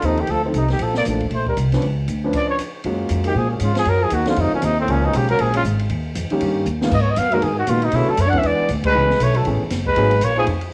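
Playful and warm, this short slice of small-group swing and bop races along at 236 BPM in F# major, with a growling, raspy trumpet out front carrying the melody in scooped, vibrato-laden notes while a breathy trombone sits in the background on a second line. A woody upright piano with audible action noise supplies the accompaniment, a pizzicato upright bass with steel strings sits up front, and an open drum kit with dark cymbals, a high-tuned snare and a boomy kick rounds out the band. The cassette home recording adds a lo-fi grain and light studio reverb, and the chords shift restlessly under the horns, punctuated by a drum fill at 6.7 seconds and a band accent at 8.8 seconds.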